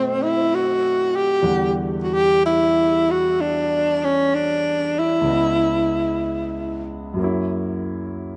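A breathy, close-miked tenor saxophone and a clear concert grand piano begin together in this wistful, intimate jazz ballad excerpt, moving at a slow 63 BPM in 4/4 with a gentle swing. The saxophone carries the melody up front with vibrato, while the piano's deep bass and long sustain accompany it through chords from B7b9 to Em9, C#m9 and F#7. The saxophone stops at 6.9 seconds, and the piano rings on alone until 8.4 seconds, all bathed in a moderate plate reverb with a softened top end.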